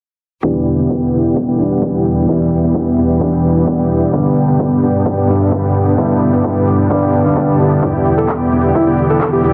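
Emotional and powerful, this excerpt of festival progressive house sets a huge, detuned supersaw riff over lush, biting strings and a clear concert grand piano, all pumping with sidechain, while crisp hats and handclaps sit in the background over a punchy, very quiet kick, a filter sweep runs throughout over Em7 and G chords, and a close-miked alto saxophone with subtone and scooped notes enters at 8.2 seconds after the piano stops at 7.8 seconds.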